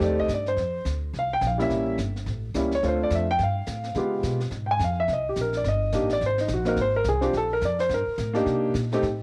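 A brisk 4/4 swing at 213 BPM, with a light 60% swing on the eighths, drives this relaxed, sophisticated jazz piano trio excerpt in Bb major, cut from a longer piece. The grand piano sits up front, smooth and vintage in tone with a cassette-tape coloring, taking a solo across the full 9.2 seconds and ranging from G3 to Ab5. Beneath it, the upright bass is plucked pizzicato, woody and present on steel strings, spanning G1 to Db3. The brush kit sits low in the mix, also carrying a cassette character, with a high-tuned, brushed snare, a boomy kick and hi-hat. Harmonies move through colorful changes such as Bbadd9, A7b9, Db7#11 and Cm9, and the whole trio is framed by a light, small-room reverb with the intimate feel of a home recording on cassette.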